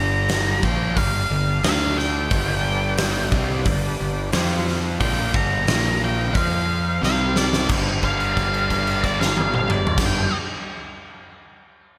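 A driving, raunchy blues rock and southern rock power-trio groove at 89 BPM in 4/4 opens with a dark, octave-fuzz lead guitar soloing over a double-tracked, hollow-body overdriven guitar riff with slapback echo, a growly fuzz fingered bass, and a bright, shouting tonewheel organ sustaining chords in the background with key click, chorus vibrato and slow rotary speaker. A big rock kit with a punchy kick and a fat snare sits up front in a stone-room sound from 0.3 s, and its fill from 7.0 s leads into a held note from 7.7 s to 10.0 s. Lush hall reverb gives this cut from a longer piece a big arena feel.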